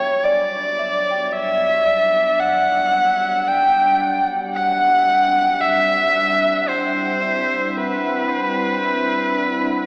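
A warbly, detuned tape-like pad fades in with chorused sustained chords as a smooth electric violin sings an up-front, vibrato-laced melody through analog delay and a very quiet, pure FM synth bell traces soft arpeggios, drifting from Gmaj7 to Cmaj9 at 4.5 seconds in this serene, free-time ambient fragment bathed in a lush plate reverb and an echo-heavy, small-speaker sound.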